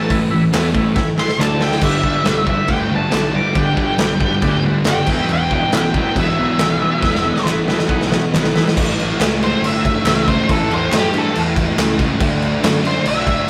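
A dark octave-fuzz lead guitar opens this raw, swaggering garage rock piece with a short solo in A mixolydian at 139 BPM, over a thick, double-tracked fuzz guitar riff, punchy overdriven fuzz bass and a buzzy vintage combo organ holding light-vibrato chords in the background until 8.7 seconds. Up front, a gritty, saturated acoustic drum kit with a punchy kick and a rolled-off top pumps in a bright stone room, adding fills before the sections change at 1.8 and 8.8 seconds, while crisp, close group handclaps sit further back. The chords move from A through D, G and E, and the rough rehearsal-room recording carries a moderate reverb.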